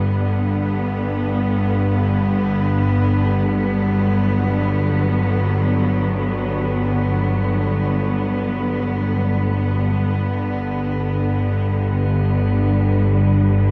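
Ambient, unsettling and dark, this excerpt from a longer piece places a tense, detuned, sawtooth-edged drone with vibrato up front beneath veiled, con sordino sustained chords from a muted chamber cello section, while a barely audible quartz singing bowl rings with slow beating until 9.9 s, the whole set in a huge, dim reverberant space.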